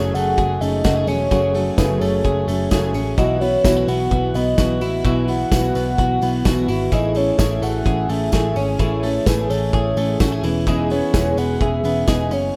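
Jangly indie pop at 128 BPM in 4/4, breezy and nostalgic, heard in a short cut from a longer piece. A soft, octave-layered synth lead carries the melody between B4 and F#5, its round, detuned tone given shimmer by chorus and phaser. Beneath it, a full-bodied fingerpicked steel-string acoustic guitar and a bright, compressed twelve-string electric guitar playing arpeggios fill out the harmony, while a dark, foam-muted vintage electric bass holds the low end between E1 and B1. A loose indie drum kit with a punchy kick, medium-tuned snare, hi-hat, ride and dark cymbals drives the groove, with a jingly tambourine sitting in the background. The chords move from F#madd9 to Bsus4, Amaj7 and E6, and the whole thing has the small-room ambience of a rough home demo mix.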